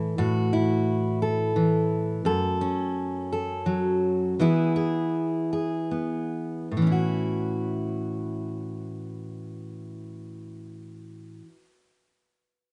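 Gentle and warm, this short folk fragment of a longer piece in 6/8 features a solo fingerpicked steel-string jumbo acoustic guitar, full-bodied and up front, moving through A5, F#m and E before slowing between 2.3 and 6.7 seconds and settling on an A6 chord, all captured outdoors with a touch of light reverb and a softened, rounded top end.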